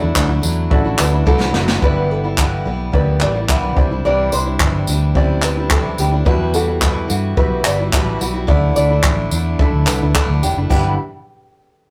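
Carefree and sunny, this short acoustic pop fragment sets fingerpicked flamenco guitar arpeggios over a picked steel-string acoustic guitar with audible finger squeak, while a woody upright piano with its action noise sits in the background. A round, foam-muted vintage electric bass and an up-front brushed drum kit with a punchy kick, dark cymbals, handclaps and tambourine carry the groove, with a drum fill at 1.3 seconds leading into the main section at 1.8 seconds. The whole has a rough rehearsal-room character with tube saturation and moderate reverb, moving through a gentle cycle of add9, sixth and suspended chords.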